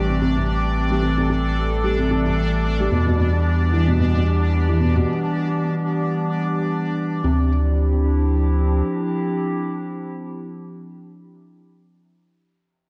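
Swung sixteenths at 111 BPM in 4/4 drive this melancholic, glitchy IDM fragment in D minor, where a round sine sub bass with tube saturation sits up front, a felt-muted upright piano plays boxy, intimate arpeggios through dub echo with audible action noise until 7.5 s, a bubbling, resonant sawtooth texture steps through random filter changes with chorus and built-in reverb until 7.3 s, and a dark, nostalgic square-and-triangle pad sustains chords through chorus to 11.9 s over Am7, Em7 and Dm11, the mix carrying worn cassette warble and pitch drift.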